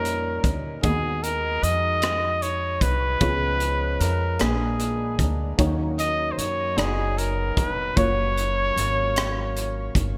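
A bright 1980s-style digital production bathed in moderate plate reverb frames this jubilant, reverent slow gospel excerpt in 6/8, where an up-front trumpet with vibrato and digital delay sings a jazz-style solo melody over an intimate baby grand piano with ensemble chorus and audible action noise, a reedy, breathing hand-pumped harmonium holding mellow sustained chords, a woody pizzicato upright bass on gut strings, and a punchy, gritty fusion drum kit of hi-hat, kick and rim click dressed in gated reverb.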